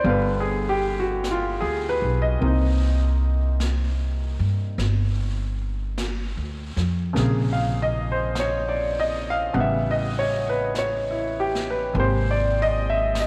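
Set in a light small-room reverb, this romantic, intimate jazz ballad excerpt swings gently at 50 BPM in 4/4, with a clear, up-front concert grand piano voicing chords from G7 through Cm7, Bbm9 and A13 to Abmaj9 over a woody, pizzicato upright bass and a soft, natural brush kit on snare and hi-hat, all three playing throughout the 13.3 seconds.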